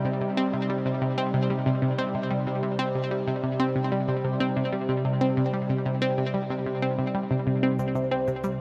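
A round, nasal analog pluck sits up front, playing a riff between C3 and C4 from the opening second to 8.5 s, colored by chorus, phaser and delay. Alongside it, a lush, detuned unison pad holds sustained chords on C minor with a slow attack and long release, its bright sawtooth tone thickened by chorus. This is hypnotic, mysterious ambient space music driven by a sequencer at 93 BPM in a straight 4/4, cut from a longer piece and bathed in a huge, wet reverb. At 7.8 s the harmony drops away and three parts enter together: a dark, warbling portamento lead with a vintage vibrato touch and ensemble chorus on C5, a fat, saturated analog bass on C2, and a soft electronic shaker. The bass and shaker stay in the background as the passage closes at 8.6 s.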